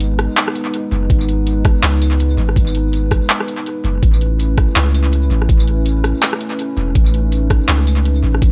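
A dry, echo-heavy mix frames this tense, cinematic cut of half-time drum and bass at 164 BPM in G# phrygian, its swung sixteenths moving from G#m to Aadd9 at 4.0 seconds. A dark, detuned analog pad with chorus and sidechain pumping holds sustained chords above a deep, mellow 808-style bass that sits up front with long, decaying sine notes. The overdriven drum kit brings bright hats, handclaps, rim clicks and tambourine with tape echo and small room ambience, and a knocking, overdriven electronic kick joins at 1.1 seconds.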